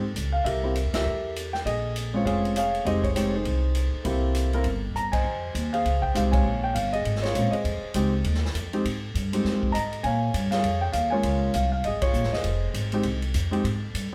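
A brisk swing at 200 BPM in 4/4 drives this moody, cool jazz piano trio in F minor, cut from a longer piece, with the drum kit's punchy kick, medium-tuned snare, hi-hat and ride keeping time while a woody pizzicato upright bass anchors the low end. Up front, a warm concert grand piano with deep bass and plate reverb carries the melody over chords moving between Fm7, Bbm7 and C7. The whole band hits accents, including one at 0.9 seconds, and a drum fill at 5.0 seconds leads into the second pass through the theme, all set in a wet club reverb heard from further back in the room.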